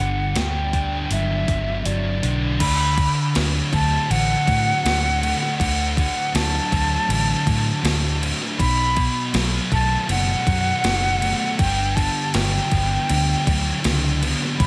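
A straight 4/4 pulse at 80 BPM comes from a gated 80s drum machine that enters at 0.4 s, with a thumpy kick, a gated-reverb snare, hi-hat and crash, all overdriven and up front; the kick and snare drop out from 1.9 to 2.6 s before the main section begins. This hazy, dreamy shoegaze and dream pop cut in D major pairs a thick, double-tracked fuzz guitar riff with analog chorus and a dark, round, foam-muted fingered bass, moving through Gmaj7, D, B5 and back to Gmaj7. Above them, a mellow, hollow silver concert flute carries the tongued melody with vibrato and analog delay, all set in light reverb.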